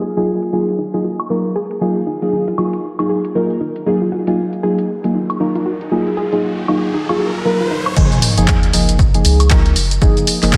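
A dreamy, reverb-soaked mix with a lush hall ambience and a dark, low-passed haze opens this short deep house cut from a longer piece, relaxed and warm in mood with a swung sixteenth-note feel. A deep, mellow chord stab sits up front from the start, its detuned tones thickened by chorus and phaser and pumping against the sidechain, while a soft, round pluck plays arpeggios further back, colored by cassette-tape grit and a diffuse ambient delay. A filter sweep runs over the opening 8.0 seconds as a punchy analog drum machine, re-recorded in a large room, brings muffled hi-hats, shaker, handclaps, woodblock and crash cymbal. A riser builds from 6.0 seconds into a sub drop and impact, and at 8.0 seconds the drop arrives with a punchy electronic kick and a round, deep analog bass that pumps beneath the stabs. The pluck falls away just before, leaving the stabs, bass and drums to carry the lush, hazy groove to its end.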